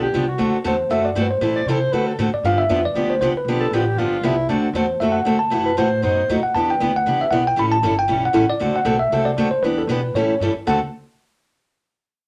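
A breathy, close-miked soprano saxophone with vibrato, a boxy, up-front picked parlour guitar and a woody, growly pizzicato upright bass open this playful, swinging excerpt of acoustic string swing at 234 BPM in D mixolydian, with a bright, bell-like tine electric piano taking the melody from 0.7 seconds while the saxophone's second line drops out at 6.3 seconds and returns briefly at 10.7 seconds over a short, wet studio reverb.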